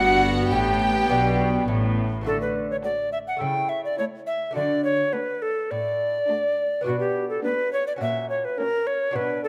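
Baroque-style classical concerto movement, festive and lively, in D major at 104 BPM, cut from a longer piece, with an airy, chiffy alto recorder up front carrying the expressive tongued melody while a chamber violin section also plays the melody softly in the background. A lush symphonic violin section plays a second line, a focused viola section and a bright, delicate fingerpicked lute with double strings fill in the accompaniment, and a clear, distant cello section holds the bass, joined by a smooth double bass section that drops out at 2.3 seconds. The strings are bowed with vibrato, and a moderate recital hall reverb surrounds the ensemble as the harmony moves from G through D and A/C# to B minor and F#/A#.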